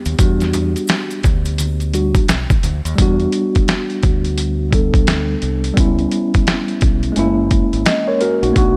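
A swung 4/4 groove at 86 BPM drives this smoky, mellow jazz-hop fragment in E minor, built on a gritty, compressed, pitched-down boom bap drum kit with a thumpy kick and an overdriven, up-front edge. A clean tine electric piano, heard through its built-in speakers, takes a solo over Em9 in the opening section, while ringing maracas and congas sit in the background with hard hands until 3.0 seconds. A round, dark fingered dub bass underpins the whole fragment, and in the later section the harmony moves from a rootless Em9 through C#m7b5 to F#7, all in a light reverb.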